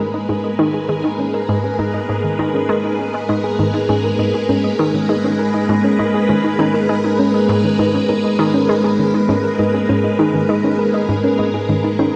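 Ambient, sequencer-driven space music at 100 BPM in a straight 4/4, this short excerpt cut from a longer piece feels expansive and hypnotic, resting on a single Abmadd9 chord throughout its 12.2 seconds. A full-ensemble string machine sits up front with lush, vintage sustained chords between Ab3 and Cb5, its slow attack and ensemble chorus giving a mellow sawtooth body with a sub octave and a moving notch, bathed in shimmer reverb. Beneath it, an analog pluck plays a riff from Ab2 to Ab3, its nasal, wave-folded tone sharp at the attack and quick to decay, carried by chorus, tape echo and shimmer reverb. Higher up, a thumb-piano-like FM pluck spins arpeggios from Eb3 to Eb5 with a tine-like, gentle and darker character, also treated with chorus, tape echo and shimmer reverb. All three parts play from the opening to the close, set in a dreamy mix soaked in a lush hall reverb with a 2.7-second decay.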